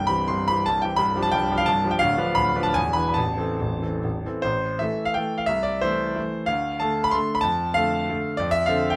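A bright, up-front concert grand piano plays solo from the first moment in this brief fragment of a proud, rustic romantic classical dance in 3/4, its dotted rhythms bent with rubato as the harmony turns from C major toward darker minor chords, with deep bass, audible action noise and long sustain captured intimately under light reverb.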